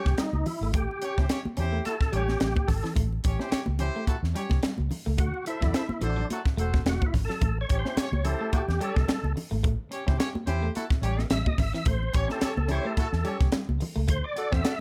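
Funk excerpt with an energetic, playful, lightly swung 16th-note feel, led by a percussive tonewheel organ solo that runs the full 14.8 seconds, lightly overdriven with key click, chorus vibrato, fast rotary speaker and plate reverb. A distant, loose horn section in plate reverb plays a second line, while a slightly broken-up, picked and compressed electric guitar plays a riff. A dark, foam-muted fingered electric bass and an up-front fusion drum kit with a high-tuned snare and punchy kick drive the groove, backed by damped, close congas in the background as the chords move between A and D9.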